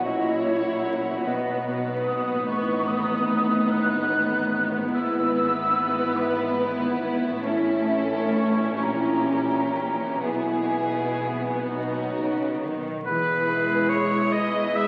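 Tender and lyrical, this slow, rubato romantic orchestral movement in a lilting 6/8 lets an expressive, vibrato-laden violin section carry the melody over a second, more focused violin line, smooth viola accompaniment, soft-attack cellos, a smooth double bass section, mellow sustained French horn chords and quiet ringing harp arpeggios, while an airy flute ensemble sings a crisp second line until 11.6 s before a bright clarinet and an up-front oboe enter at 13.1 s, all heard through a wet scoring-stage reverb and the crackle of a very old 78 rpm record.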